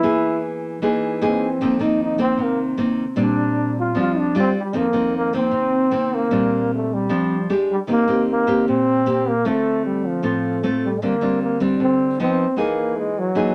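A straight 4/4 bossa nova groove at 153 BPM sets a relaxed, sunny mood in Bb major, with a bright, fingerpicked nylon-string guitar in a classical style laying down the accompaniment, its finger squeaks audible up front. A warm trombone carries the melody in a jazz style, taking a solo over the opening 4.7 seconds with vibrato and scooped notes as the harmony moves through colorful chords like Bb69 and F7sus4. Both instruments sit close in a moderate studio reverb, and the passage shifts into a new section at 4.7 seconds that drifts toward a closing Emaj9#11.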